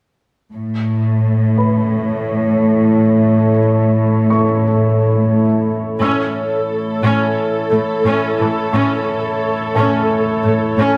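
A rich, bowed cello section holds a low A from 0.6 seconds, anchoring this futuristic, relentless cinematic excerpt at 88 BPM in 4/4 over a single A chord. A deep, moody synth pad of sawtooth and sine with a sub octave sustains chords through chorus and a low-pass filter, while a dark vintage grand piano drifts in the background through delay. After a filter sweep, a lush viola section enters at 6.0 seconds for the build-up, and everything sits in a wet recital hall reverb.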